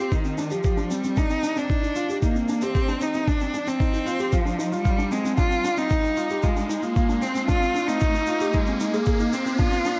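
A thumpy, muffled electronic kick drum sits up front from the start at 114 BPM in a straight 4/4, alongside a warm shaker with a rolled-off top, in this hypnotic, moving piano and strings electronica cut from a longer piece in C minor. A felt-muted upright piano plays a mellow, intimate riff while a close, bowed cello carries the melody with vibrato, both washed in delay and shimmer reverb, as the harmony moves from Cmadd9 to Ab at 7.5 seconds. The whole passage is a build-up, with an electronic riser rising in the background from 1.5 seconds within a moderate echo-chamber ambience.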